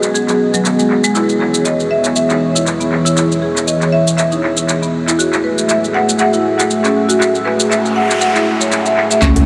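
A dreamy mix soaked in a huge ambient reverb opens this short afro house excerpt, earthy in mood and built on a swung 4/4 groove. A deep, moody analog pad sits up front with detuned, sub-octave chords that pump against the sidechain under a chorus sheen, moving from G#m7 to E6 and then to F#m9. Woody marimba arpeggios played with medium hard mallets run through a filter sweep and an analog delay, while a house kit adds handclaps and metallic, filtered hats and grainy, close maracas shake beneath. A noise sweep enters at 7.6 seconds ahead of the change. At 9.2 seconds a smooth, mellow synth bass arrives up front on C#2 with a punchy electronic kick, a brief touch of bright, distant congas and, just after, a tight, cracking djembe with metal rattles.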